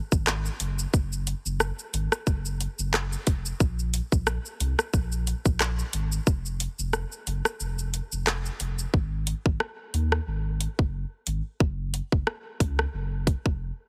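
An up-front electronic island pop drum kit of tight kick, metallic hi-hats, rim clicks, handclaps and shaker drives this tough, sultry dancehall cut at 90 BPM with a lightly swung sixteenth feel, its kick dropping out from 7.6 to 8.9 seconds before the second section, while a round, sine-like sub bass with a fast attack and sustained notes sits deep and up front, all in a dry, heavily compressed radio-style mix.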